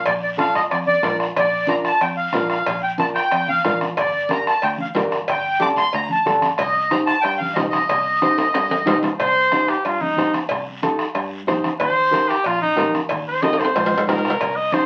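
A reedy, sweet accordion solo opens this driving, danceable cumbia excerpt at 184 BPM in C dorian, over a dark fingerpicked nylon-string guitar with audible finger squeak, a round, foam-muted electric bass, a soft vintage bombo, thick-skinned congas, ringing cowbell and timbales and a raspy background guiro, until a drum fill at 8.4 seconds hands the lead to a clear, punchy trumpet solo with vibrato at 9.2 seconds, all heard through a wet studio ambience and the crackle of a very old 78 rpm record.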